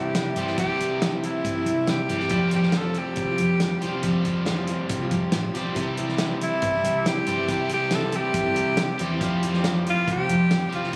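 Captured on a phone in a club-like room with light reverb and compression, this nostalgic, open-road folk and heartland rock fragment in C major moves at 139 BPM over C and Fsus2 chords, with an up-front, punchy tenor saxophone soloing with light vibrato and tape echo above a full-bodied picked dreadnought acoustic guitar, a double-tracked overdriven electric guitar riff, a dark, round hollow-body bass, and a natural small-room country drum kit with a punchy kick, while a reedy, very quiet accordion adds sustained chords from 5.8 seconds.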